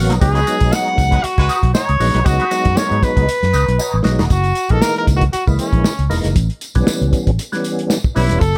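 A dry mix carries this short cut from a longer gritty, strutting funk piece with a swung sixteenth-note feel. A foam-muted fingered electric bass sits up front with a round, punchy tone. Dark soul drums with a tight kick and a medium-tuned snare drive the groove, with a drum fill from 3.8 to 4.3 seconds, while a jingly tambourine shimmers from a distance. A fat, lightly overdriven tonewheel organ plays percussive stabs with key click, chorus vibrato, a slow rotary speaker and plate reverb. A twangy, compressed guitar with wah and ensemble chorus stays in the background, dropping out at 4.3 seconds and returning only at the very end. A clear trumpet with light vibrato leads the melody, roomy yet up front, and a horn section adds a brief, distant second line at 1.1 seconds.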